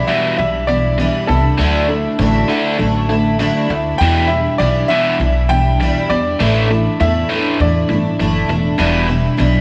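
Folk rock and heartland rock in a wistful, reflective mood, this short excerpt pairs a shimmering, octave-doubled twelve-string acoustic guitar under lush chorus with a biting, double-tracked overdriven electric riff, while a bright, polished concert grand carries the melody until 8.5 s and a woody pizzicato upright bass joins up front at 0.4 s, all set in a moderate echo-chamber reverb over Em7, Dadd9 and Asus4 chords.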